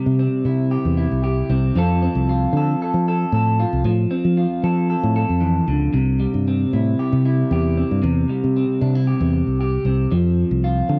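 A light digital reverb lends this short cut from a longer highlife guitar band piece a sunny, danceable sheen, moving at 115 BPM in 4/4 with a gentle swing in C major. An up-front electric guitar, picked and compressed at the edge of break-up with a touch of chorus, carries the accompaniment across the full 11 seconds, while a fingered electric bass enters at 0.1 seconds with a round, punchy, dark tone. The harmony moves from C to F at 1.8 seconds, back to C, and lands on an F5 at 10.1 seconds.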